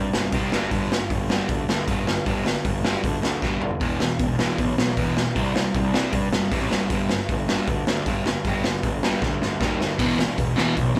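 Energetic and rebellious, this short punk rock excerpt has the straight, driving feel of a band playing live together in one small room, with a light reverb around it. A sludgy, dark, overdriven electric guitar sits up front, picking a low riff over a cycle of C5, G5 and E5 power chords. Beneath it, a fuzz-soaked picked electric bass growls in the background, its bright, amped tone adding grit to the low end. The raw garage drum kit is acoustic and pushed forward, with a boomy kick, a medium-tuned snare, hi-hat, crash cymbal and toms, all saturated and gritty with a rolled-off top and a pumping room sound. Drum fills break in at 3.4 seconds and again at 9.2 seconds, and at 10.0 seconds a second overdriven guitar with a warmer tone joins the riff for the final moment.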